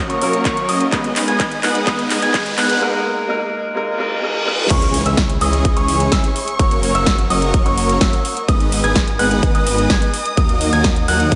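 Festival progressive house at 127 BPM in G# minor, this powerful, euphoric excerpt spends 4.7 seconds building, with a smooth, vintage-gritty concert grand piano, a filter-swept supersaw riff, a drum fill, a riser and a reverse cymbal. It then drops, carried by huge, full-bodied supersaw chords that run throughout over a thick, chorused detuned saw bass, both pumping with sidechain, while a mellow baby grand plays high arpeggios and a dark, woody string section holds bowed chords with vibrato in the background. A layered big-room kit adds handclaps, snare, crash and metallic hats around a punchy kick up front, an impact marks the drop, and the dreamy mix is soaked in lush hall reverb, with analog delay on the pianos and supersaws.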